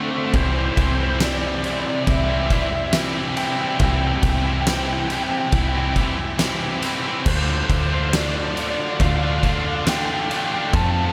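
A lead guitar through a small cranked amp carries the melody high above this hopeful, euphoric post-rock passage, its dark, overdriven picked tone trailed by tape echo from 0.4 seconds onward. Beneath it, two overdriven electric guitars play the riff from the very start. One is bright and up front. The other is crunchy, set in the background and thickened by an ensemble chorus. An overdriven picked bass, round, punchy and foam-muted, joins at 0.3 seconds with an oversized low-tuned drum kit that brings a fat snare, punchy kick, dark crash and ride cymbals, and a gritty, saturated pump from its bright stone room. At a slow 69 BPM in straight 4/4, the harmony rests on C before shifting to Dm7 at 7.3 seconds, and the dreamy mix is soaked in a huge ambient reverb with a long tail in this short cut from a longer piece.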